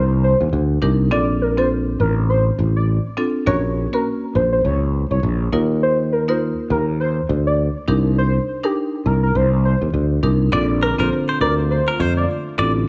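A small-room ambience gives this short afrobeats excerpt an intimate, close feel, with a romantic and joyful mood at 102 BPM in Bb major, its sixteenths carrying a gentle swing. A velvety sawtooth synth lead carries the melody with vibrato and portamento, glazed with chorus and digital delay, while a growly, up-front fretless electric bass sustains beneath it. From 0.8 s a dry, woody marimba played with medium mallets on padauk bars adds close-miked accompaniment. The harmony moves through Cm7, Bbmaj7, Gb/Bb, Ebsus2 and Cm7 once more before settling back on Bbmaj7. At 10.5 s a hollow, flute-like pad with chorus sits dark in the background, and a twangy, compressed clean electric guitar plays a bright picked riff up front, trailed by digital delay.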